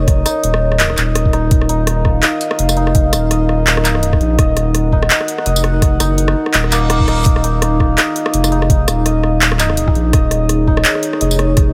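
A dark analog pad opens this cinematic, heavy excerpt of half-time drum and bass in Eb minor, its moody sawtooth and triangle chords sitting over a sub octave with a slow attack, colored by chorus, phaser and sidechain pumping. From the same moment, a bright acoustic santur rings out shimmering hammered arpeggios through tape echo, while a thick, saturated sine sub bass holds the low end, deep and up front. At 0.1 seconds the drums arrive at 167 BPM with a 16th-note swing: a gritty, compressed, pitched-down electronic kick gives a thumpy weight, and an overdriven, layered kit of handclaps, rim click, tambourine and bright hi-hats sounds re-recorded in a small room and sits close in the mix. The harmony rests on a single Eb5 chord throughout. An electronic reverse cymbal rises briefly between 6.7 and 7.3 seconds, and a light reverb gives the whole passage a modest sense of space.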